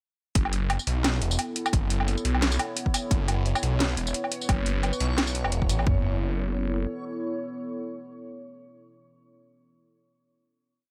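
Dark and spacious, this short, complete half-time drum and bass piece opens straight into a drop at 0.4 seconds, where two drum kits and a bass come in together over an F# minor chord, with a pad joining at 0.7 seconds. An overdriven trap kit sits up front with a hard-clipped kick and floor tom, while a layered electronic kit adds a cracking snare, metallic closed hats, tambourine and a low woodblock in a sparse, swung half-time beat that was re-recorded in a small room. Underneath, a thick, swirling detuned saw bass holds long, saturated low notes through a phaser. A deep, moody analog pad with chorus, phaser and sidechain pumping sustains slowly shifting chords above it. At 4.2 seconds a reversed, dreamy granular texture rises softly in the background on a single held high note with its own reverb. The drums fall away by 6.0 seconds and the bass lingers until 6.9 seconds, after which the pad carries the final chord on its own until 9.4 seconds, all within a light reverb.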